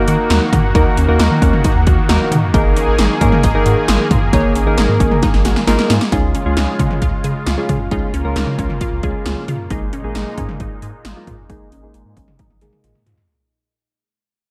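Synth-pop at 134 BPM in Db major, nostalgic and bright: this short cut from a longer piece pairs soft, airy electric-piano-like synth keys and a lush, warbling detuned unison pad, both chorused, with a squelchy resonant blip pluck arpeggiating in the background through phaser and slapback echo, a round analog bass, and up-front overdriven 80s electronic drums with a punchy kick and gated reverb on the snare and toms, moving from Ebm and Absus2 to Db, with drum fills at 5.2 and 12.4 seconds and a filter sweep and fade-out starting at 6.1 seconds.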